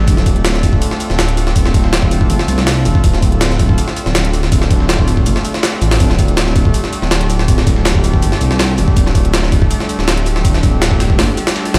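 Atmospheric and nostalgic, this drum and bass excerpt in a jungle style runs at 162 BPM in D minor: a gritty, pitched-up sampler-style jungle kit with a thumpy kick and high-tuned snare sits up front over a deep, rumbling detuned saw bass, while a warbly, lo-fi tape-like pad with chorus and built-in reverb holds slow-attack chords moving from Dm7 to Gsus2/D at 6.0 seconds, and a very quiet compressed electronic shaker and fat snare, re-recorded in a large room, lingers far behind, the mix heard through a big sound system in a bare stone room.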